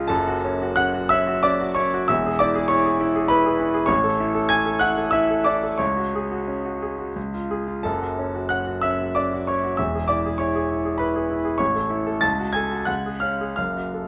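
A close, intimate piano sound sits up front in a recital hall with moderate reverb, where the audible action noise of the instrument blends with the room's 1.4-second decay. This is a short cut from a longer romantic character piece for solo concert grand, stormy yet bittersweet, in F# minor with the piano tuned to A4 = 436 Hz. It moves in 3/4 at a flexible rubato pace between 79 and 103 BPM, with the piano spanning from E1 up to A6 so that a deep bass anchors the polished, clear upper register. The harmony circles from F# minor through E and A before a suspended C# chord resolves to C# around 7.2 seconds, then the same path returns, closing with a cadence through F#m/C# and C# back to F# minor at 13.6 seconds. Long sustain lets each chord ring into the hall across the full 14.1 seconds.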